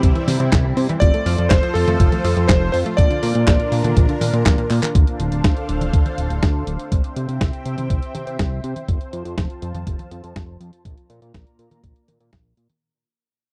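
This melodramatic, nostalgic italo disco excerpt opens with everything but the piano at once: a lush, detuned unison pad sustaining chords through chorus and phaser, a round, bright sawtooth pluck playing arpeggios in the background with chorus, cassette tape color and tape echo, and a fat, thick sawtooth bass sitting up front. Underneath, a gritty, compressed sampler-style drum kit of handclaps, hi-hat, a medium-tuned snare and toms carries a tape-warm, large-room character, led by a thumpy electronic kick that is the most forward element of the mix. At 1.0 seconds a vintage electric grand piano with a clangy low end and long sustain adds a short melody through tape echo. A drum fill at 4.7 seconds sets up the change at 4.9 seconds, where the pluck drops out and the chords move from a minor seventh back through the earlier progression. Over this closing stretch a filter sweep moves across the pad as the whole piece fades out. 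The overall sound is dry and close, like a 1970s-style studio recording.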